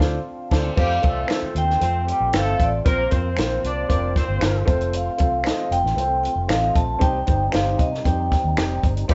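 A ringing vibraphone with medium mallets and a slow motor vibrato carries the melody through this danceable, uplifting slice of uptempo 1960s-style soul, opening on a band accent before settling into a straight 4/4 groove. A woody upright piano with audible action noise, a fat tonewheel organ through a fast rotary speaker and light overdrive, and a round, foam-muted electric bass fill out the harmony beneath, while a tight cocktail drum kit with a punchy kick, high-tuned snare and dark cymbals sits up front. A mellow horn section with soft attack adds a second line from 0.8 to 4.7 seconds, close dry finger snaps join at 1.3 seconds, and light reverb gives the whole group the feel of a band playing live in one room.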